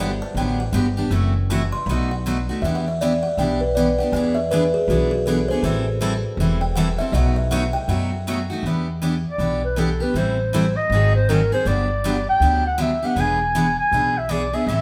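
This is acoustic string swing in the jazz manouche style, bittersweet and swinging, cut from a longer piece. A buzzing kalimba takes the opening solo as a second line, its thumb-plucked notes ringing with a hollow, boxy tone until 8.5 seconds. Beneath it, a bright, full-bodied picked steel-string acoustic guitar sits up front in accompaniment, with audible finger squeak, while a woody, growly pizzicato upright bass thumps out the low end throughout. At 9.3 seconds a breathy clarinet takes over the melody for a solo, dark and whispered, with vibrato, subtone and scooped notes, sounding intimate yet roomy. The band plays live in one room, bathed in a large, wet studio reverb.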